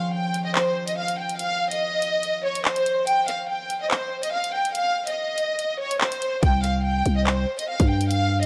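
A half-time drill groove at 143 BPM, with a hard-clipped kick, bright hats and handclaps roughened by vintage 12-bit sampler grit, enters at 0.3 seconds beneath a menacing, cold C phrygian hip hop fragment led by a rich, smooth, vibrato-laden studio violin section, filtered and touched with tape echo, while a ringing, fingerpicked concert harp, also low-passed, accompanies until 2.0 seconds before a growling, buzzy 808-style bass arrives up front at 6.4 seconds, all set in a moderate recital hall reverb.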